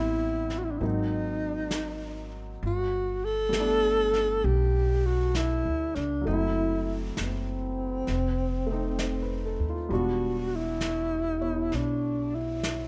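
Intimate and smoky, this slow jazz ballad moves at 66 BPM in a swung 4/4, with a breathy, mellow alto saxophone carrying the melody up front, its close-miked subtone coloured by vibrato and a soft attack. A concert grand piano accompanies with long sustain, deep bass and audible action noise, while a woody pizzicato upright bass sits forward in the mix and a vintage brush kit enters at 0.5 s with brushed snare and hi-hat under a rolled-off top. The dry, close sound follows a descending chain of chords from Am9 through G#9, Gadd9, F#m7b5 and F7 to Em9, in a short cut from a longer piece tuned to A4 = 437 Hz.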